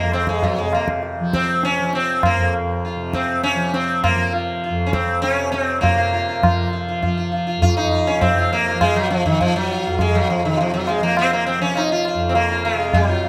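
Hindustani classical music in raga bhairavi on F, introspective and solemn, moving at about 101 BPM in 4/4 and gradually speeding up, with the tuning set slightly low at A4 = 437 Hz. An up-front sitar carries the melody between Eb3 and F4 with a bright, buzzing, plectrum-plucked tone and shimmering sympathetic strings, while a softly plucked tanpura holds a warm drone beneath and a low-tuned tabla rings close and dry. Heard through close, detailed microphones with light reverb, this fragment of a longer performance shifts into a new section at 5.8 seconds.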